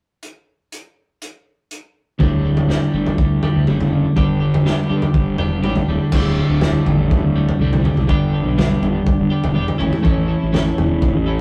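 A clean, compressed twelve-string electric guitar plays a warm riff with harmonic tremolo in this kaleidoscopic, trippy psychedelic rock excerpt at 122 BPM in 4/4, cycling through Dsus4, G and A. A crunchy, saturated breakbeat drum kit with dark cymbals, a tight kick and a rolled-off top opens alone at 0.2 s, and the guitar and a round, fuzzed-out fingered bass both enter at 2.2 s. The rough rehearsal-room sound carries a moderate studio reverb, with every part sitting up front.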